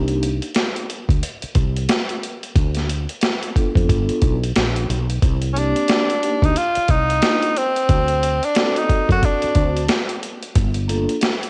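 Nocturnal and smoky, this jazz-hop excerpt rolls along at 90 BPM with swung 16ths, built on a gritty, compressed boom bap sampler kit with a thumpy kick and high-tuned snare, a growly, woody fretless electric bass touched with subtle chorus, and a mellow soft-mallet vibraphone accompaniment shimmering with medium motor vibrato through cassette tape, until a clear tenor saxophone steps up front at 5.5 s with scooped notes and light vibrato before falling silent at 9.9 s, all moving from Cm7 toward Gm9 in a home cassette recording with light reverb.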